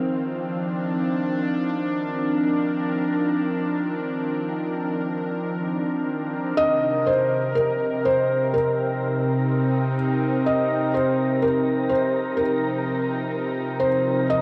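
Ambient and reflective, this spacious excerpt sets a morphing, warbling wavetable pad up front on sustained chords over a dark, detuned sawtooth drone and a breathy, wind-like tuned noise texture that sits in the background and fades in from 6.6 s, when a soft, felt-muted upright piano with audible action noise enters up front with an intimate melody, all bathed in a huge ambient reverb within a dark, warm production.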